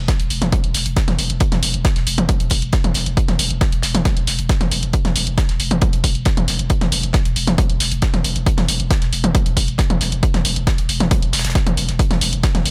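Industrial and intense, this driving peak-time techno excerpt is built on an up-front, layered electronic kick drum and a punchy analog drum machine whose hats and toms pump with sidechain compression and carry gated reverb from a large room. Beneath them a growling, buzzy 808-style bass with a fast attack and decaying tail sits low on E1, tube-saturated and low-pass filtered as it pumps in time with the sidechain, while a damped 70s acoustic kit adds a fat, dark snare and rolled-off hi-hat in the background. The sound is dry overall, with a bright 1980s-style digital sheen.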